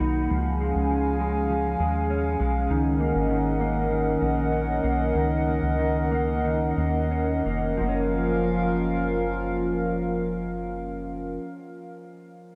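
In a straight 4/4 that slows down between 2.7 and 7.8 seconds, this ethereal, floating dream pop excerpt moves from C# through F#6 to a closing F#maj7. A hollow, flute-like pad holds sustained chords up front with slow attack and chorus, while a clean, fingered electric guitar plays dark, compressed arpeggios through ensemble chorus and tape echo. Beneath them, a round, deep analog bass with a fast, decaying attack sits forward, and the whole dreamy mix is soaked in a huge ambient reverb.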